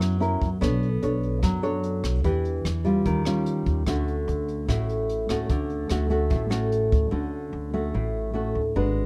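Relaxed, sophisticated bossa nova at 148 BPM in D major, with an up-front nylon-string guitar thumb-plucking dark, classical-toned chords over an F#7, Bm9, Em7, Eb9, Dmaj7 progression, a woody pizzicato upright bass, and a brushed jazz kit with a boomy kick, hi-hat and rim clicks that drops out at 7.0 seconds, all set in light reverb within a warm production.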